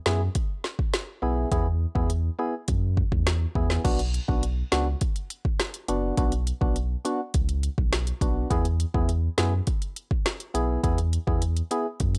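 A dry, gritty recording with a cassette-tape character and a digital ambience frames this bouncy, sultry dancehall piece at 103 BPM in B dorian, cut from a longer piece. An electronic afro-pop drum kit with a deep kick, woody snare, smooth hats, rim click and crash sits up front beside a full sine-and-triangle sub bass with an added octave. A hollow, warbling vintage organ stab with a noise layer, chorus and sidechain pumping plays dark, decaying chords that move from E to Bm at 3.8 seconds and back to E at 8.5 seconds.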